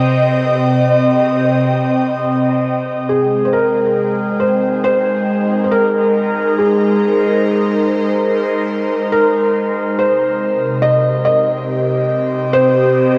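Peaceful and luminous, this ambient fragment drifts at 70 BPM in a straight 4/4, set in Ab major and tuned slightly low with A4 at 436 Hz. A felt-muted upright piano carries the melody between Ab4 and Eb5 throughout its 13.2 seconds, its tone soft, muted, mellow and intimate, trailed by shimmer reverb and tape echo. Alongside it, an airy, breathy pad holds sustained chords from C3 to G5, its detuned sawtooth and triangle layers with a noise layer blooming through a slow attack and long release, treated with chorus, phaser and shimmer reverb, its sound bright and up front. The harmony opens on Cm, moves to Abadd9 at 3.1 seconds where a new section begins, and returns to Cm at 10.0 seconds. The whole is bathed in a cathedral-like reverb with a five-second decay and coloured by worn cassette tape, whose warbling pitch drift gives the sound a faded, dreamlike quality. Cut from a longer piece, it feels like a suspended moment rather than a complete statement.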